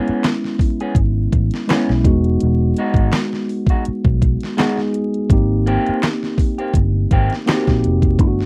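An overdriven, layered pop drum kit sits up front in this short neo-soul and R&B excerpt, its knocking kick, deep snare, hi-hat and handclaps riding a lightly swung 83 BPM groove in 4/4. A dark, round, foam-muted electric bass punches low beneath a mellow, clean tine electric piano that moves from a rootless Amaj9 to Emaj9 at 2.0 seconds and G#maj9 at 5.3 seconds, while a quieter, slightly broken-up electric guitar through a small old amp adds a lo-fi second line until 7.7 seconds. The sensual, warm mood is framed by a dry, close 1970s-style studio sound with vinyl crackle.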